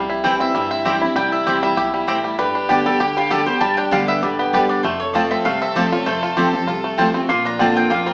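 Bluegrass with a virtuosic, joyful swing, this short cut from a longer piece has a woody, double-strung mandolin carrying the melody from 0.2 seconds while a brighter second mandolin adds stabs and a clear, focused fiddle with light vibrato plays a second line. Up front, a full-bodied dreadnought guitar picks the accompaniment and a twangy, percussive banjo rolls out arpeggios with fingerpicks, while a dark pizzicato upright bass sits in the background, all moving through C, Gadd9, F and Bbadd9. The band plays live in one room, bathed in a wet large-studio reverb, with a small-speaker sound.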